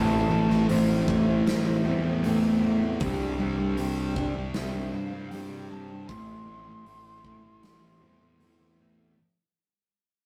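Shoegaze and dream pop with rock roots, this dreamy, hazy fragment fades out across its full 9.2 seconds as the harmony moves from Am to Csus2 and back. A dark, distorted fuzz guitar riff and a slightly broken-up electric guitar through a small old amp sit over an overdriven fuzz bass that is bright and up front, while a huge arena drum kit with a punchy kick and a medium-tuned snare joins at 0.5 seconds. In the background a shimmering, octave-doubled twelve-string acoustic guitar picks arpeggios, and an airy, hollow jazz flute carries the melody with vibrato and a crisp chiff, the mix sitting in wet studio reverb with the rough feel of a rehearsal room.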